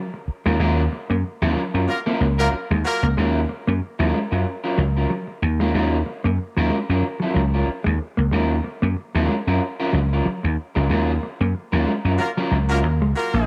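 A clean, compressed mellow electric guitar riff opens this hypnotic, sly funk excerpt with a lightly swung sixteenth feel, quickly joined by a growly, punchy vintage slap bass that drives the groove and a dark, slightly broken-up fingered guitar accompaniment, while a tight, clear horn section with octave doubling adds brief second-line phrases at 1.9 seconds and again at 12.2 seconds, the whole set in light digital ambience.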